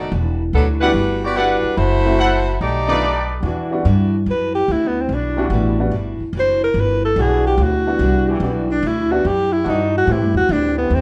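Dramatic and sultry, this big band swing excerpt moves at 145 BPM in E minor with a firm swung feel. A saxophone section carries the opening melody with soft attacks and vibrato, while a trumpet section adds smooth-topped stabs from 0.8 seconds. Underneath, a pizzicato upright bass sounds woody, growly and thumpy up front, joined by a boxy upright piano and a picked archtop guitar sitting in the background. At 3.4 seconds a bright trombone section enters with sustained chords carrying light vibrato, and from 4.3 seconds an alto saxophone solo emerges, its scooped notes and vibrato rising to the front of the mix. The harmony circles through Em9, F#m7b5 and a tense B7alt before settling on Em9 and turning to Am7 near the close, all set in a moderate large studio reverb.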